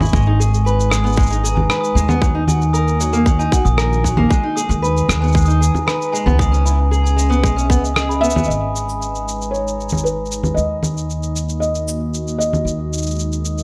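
An overdriven, tight electronic kick and muffled sampler-style congas, shaker and rim click set a straight 4/4 pulse beneath woody pizzicato upright bass in this delicate, intimate folktronica excerpt, where a boxy fingerpicked parlour acoustic guitar plays arpeggios through delay and a bell-like glockenspiel carries a second line through tape echo until 8.5 seconds, a warbling, nostalgic lo-fi pad holds chorused chords from 0.5 seconds, and a felt-muted upright piano with audible action noise takes the melody from 8.2 seconds.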